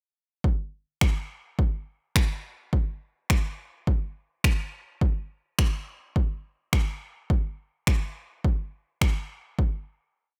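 A punchy, up-front deep house drum kit of layered electronic kick and finger snaps drives this short, confident yet bittersweet pop piece at 105 BPM in a straight 4/4, laying down a four-on-the-floor dance-pop beat from 0.4 seconds through a verse to a final hit at 9.6 seconds, with the kit re-recorded in a small room and little reverb in a rough home-demo mix.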